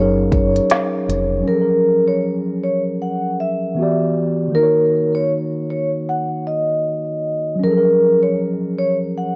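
This lo-fi hip hop fragment, cut from a longer piece, drifts along at 78 BPM in 4/4 with a gentle 16th-note swing in F# major, its mood dreamy and nostalgic. A soft-mallet vibraphone carries the melody with a metallic, ringing tone and slow motor vibrato, sitting up front over a mellow, clean tine electric piano that plays accompaniment through its built-in speakers with a cassette-tape coloring. At the opening, a round, dark dub bass plays briefly alongside an electronic drum kit with a deep kick, woody snare and smooth hats, re-recorded in a small room; the drums play from 0.3 to 1.3 s and the bass stops at 1.4 s, leaving the keys to float on their own. The harmony settles on F#maj7, moves through Em9 and D#m7, and returns to F#maj7. A moderate echo chamber reverb and a worn, warbling old-tape character with pitch drift give the whole track a hazy, faded glow.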